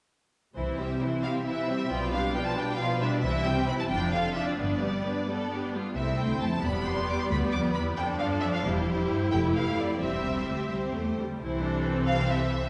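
Set back in a wet concert-hall reverb, this spirited, graceful classical-period movement for string orchestra moves quickly in 6/8 at 89 BPM in C major, with bowed violas sitting up front in the accompaniment, focused second violins, smooth double basses and warm cellos under a rich, vibrato-laden first-violin melody that enters at 1.2 s, all taken from a longer piece.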